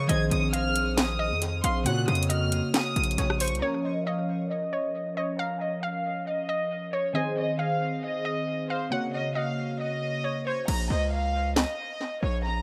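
A floating, bowed violin section carries the melancholic melody of this dark, half-time trap excerpt, played sul tasto with a soft attack and softened by a low-pass filter and tape echo. Glassy digital keys fill out the harmony beneath it, joined by a hollow, detuned square-wave pluck with chorus tracing a second line, while a distorted, saturated 808-style bass and a trap kit with a sharp snare, metallic hats, claps, rim clicks and crash hit hard up front before dropping away at 3.6 seconds. A filter sweep colours the sparse middle stretch, and at 10.7 seconds the bass and drums return with the hi-hats muted, all set in an echo-heavy mix with light reverb.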